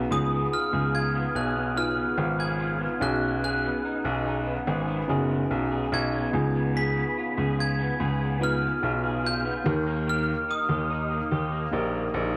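This short excerpt of nostalgic, sunny indie and bedroom pop opens with an electric guitar through a small old amp, a tine electric piano and a clear baby grand piano all sounding together, at an easy 72 BPM in a straight 4/4. The guitar is slightly broken-up and compressed, picked through an ensemble chorus with a warbly pitch drift, while the electric piano carries a worn, slightly out-of-tune cassette-tape character. Beneath them, the grand piano handles the bass line low in its register, polished and up front. At 0.1 seconds a glockenspiel struck with brass mallets takes the melody high above, its metallic, sparkling ring thickened by chorus and a slapback echo. The harmony moves from C#7 to B6, back to C#7 at 6.3 seconds, and on to D#. Light reverb and a dark, warm production wrap the whole passage in a hazy, lo-fi glow.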